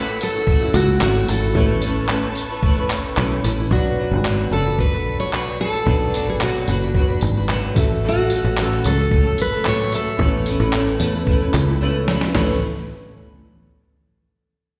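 Acoustic pop at 111 BPM in A major, sunny and carefree, heard as a live gig through the venue's PA with recital hall reverb. A full-bodied picked steel-string guitar carries the melody with slapback echo and digital delay over a bright, double-tracked flamenco guitar, a very quiet concert grand piano with audible action noise, and dark, lush bowed strings in the background that stop at 3.7 seconds. Up front, a growly, punchy fingered electric bass and a muffled, pitched-down sampler-style drum kit with a thumpy kick, handclaps and tambourine drive the chords from F#m7/A and Aadd9 to Bm, and the drums play a fill from 11.8 to 12.3 seconds.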